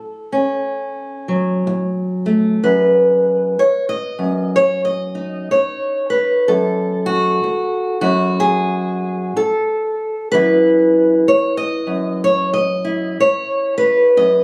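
A slow 4/4 pulse at 62 BPM with a gentle swing on the eighth notes carries this short solo folk piece, cut from a longer performance. A single fingerpicked steel-string acoustic guitar plays throughout, sitting up front with a concert-ready, warm tone and ranging from F#2 up to D#5. The mood is reflective and melancholic, opening on F#m before moving at 2.6 seconds to B over F#, then dropping into a chordless passage at 6.5 seconds and settling on C#m7 over F# at 10.3 seconds. The guitar is tuned slightly flat of standard pitch. Captured on a phone in the room, the sound carries a light club-style reverb and some compression.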